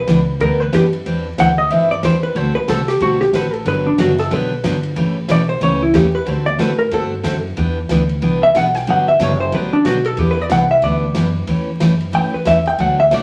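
A brisk swung 4/4 at 184 BPM drives this down-home western swing excerpt in G major, where a dark, clean, compressed hollow-body jazz guitar takes an up-front solo from 0.0 s over a bright, full-bodied jumbo acoustic guitar, a woody, thumpy pizzicato upright bass and an airy, polished drum kit riding hi-hat, ride cymbal and snare, all set in wet studio reverb with a layer of vinyl crackle as chords move through Em7, Cadd9, D7, Gmaj7 and A7.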